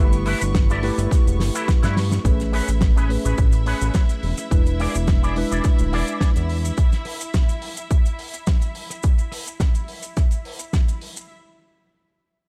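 Set in a small room, this sunny, feel-good nu-disco piece pairs a punchy, up-front electronic kick and a dry, damped 70s kit of hi-hat, rim click, shaker and snare with a fat, detuned analog bass, a twangy, clean guitar riff through an envelope filter and chorus, a worn, slightly out-of-tune tine electric piano pumping under sidechain, and biting, bowed symphonic strings whose filter sweeps from 2.2 s, until the strings and drums carry on alone after the other parts stop near 6.8 s.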